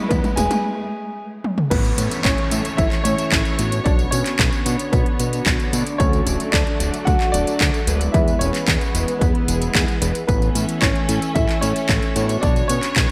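A drum fill and a riser open this sunny, danceable italo disco excerpt at 112 BPM in A major, where a concert grand piano with delay carries the melody over lush, vibrato-rich bowed strings and glossy chorused polysynth stabs in the background, the riser and downlifter stopping at 6.0 s, while a fat, nasal, detuned analog bass and an overdriven, punchy electronic kick drive alongside an up-front house kit of metallic hi-hats, handclaps, tambourine, toms and crash cymbal treated with gated reverb, with a break from 0.6 to 1.7 s.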